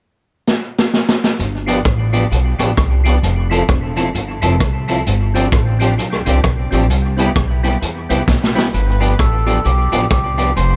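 A bouncy, joyful ska groove in G mixolydian at 131 BPM with a swung feel, this short cut opens on a crunchy, gritty breakbeat kit, its hi-hat, kick, rim click and snare treated with dub echo and a drum fill running from half a second up to 1.4 seconds before a woody, thumpy upright bass enters up front. Around it, a dark, clean picked electric guitar accompanies while a mellow, round tonewheel organ with slow rotary swirl and chorus vibrato plays stabs through G7, Fmaj7, G7sus4 and Cmaj7, with the organ sitting in the background and both carrying dub echo. After a second drum fill, a reedy, breathy melodica takes the melody from 8.7 seconds over a return to G7, all kept dry with little reverb.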